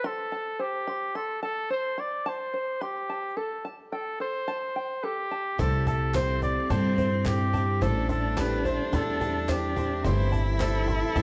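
A dark, punchy trumpet carries the melody up front from the opening, a vintage solo voice in classical style over a mellow, plunky open-back banjo that fingerpicks twangy arpeggios. This is anthemic, uplifting indie folk in C major at 108 BPM in a straight 4/4, cut from a longer piece, with the arrangement building as more parts arrive at 5.6 seconds. There a rich, focused bowed cello adds a second line with vibrato and analog delay, while a growly, woody pizzicato upright bass anchors the low end up front. Behind them sit a soft, felt-muted upright piano and a boxy, shimmering picked twelve-string guitar with octave doubling, and a snappy cajon played with soft hands brings the drums. Crisp group handclaps join at 6.1 seconds and a jingly tambourine follows just after, both kept in the background. A moderate large studio reverb gives the ensemble a sense of space as the chords move from C through Gsus24, C6 and Am7.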